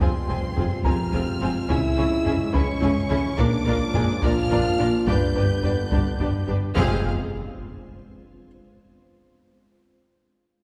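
A cinematic hybrid orchestral and electronic cue in 6/8 at 71 BPM opens with the full ensemble at once: lush, vibrato-rich violins carry a focused high melody over a softer, distant second violin line, smooth violas, and cellos and double basses holding the bass, while warm French horns, very quiet trombones and a pure, organ-like pad sustain chords through Fm, Dbm, Bb and G. A dark, ringing harp-like synth pluck with chorus and delay arpeggiates in the background, heavy compressed and saturated taiko drums pound beneath, and a very quiet baby grand piano adds texture, all set in a spacious scoring-stage reverb heard from further back in the room that lends a futuristic, vast mood. At 6.8 seconds a huge, dark impact lands as the harmony returns to Fm, lasting until the fragment is cut off at 8.5 seconds.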